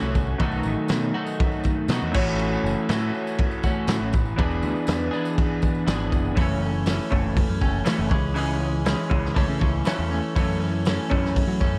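Cut from a longer indie rock piece in F# minor at 121 BPM with a straight 4/4 feel, this opens at once on two guitar riffs: a bright, twangy, clean twelve-string electric guitar up front, and a slightly broken-up, lo-fi electric guitar through a small old amp with analog chorus and tape echo. They sit over a growling, overdriven picked bass. A loose, gritty indie drum kit with a fat snare, punchy kick and dark cymbals joins at 0.2 seconds, and a jingly tambourine sits in the background, giving a restless, cool mood in a dark, warm production with light reverb and small room ambience. The chords pass through B7, A6 and E7 before shifting to F#m7 at 6.4 seconds, then C#m and A/C#, and back to F#m7.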